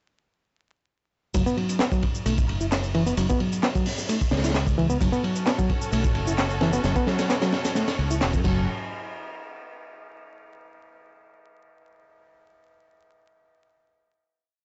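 A swaggering, energetic 131 BPM breakbeat in F# minor hits its drop at 1.3 seconds, as a crunchy, punchy looped break with a high-tuned snare and dark cymbals drives beneath an electronic shaker-and-clap layer, a round dub-style fingered bass holds the low end, and a reedy, slightly out-of-tune electric piano repeats a lightly overdriven riff through analog delay, joined at 5.0 seconds by lush bowed strings carrying vintage 12-bit grit and sidechain pumping, all on a dry, gritty recording dusted with vinyl crackle before a final hit at 8.7 seconds.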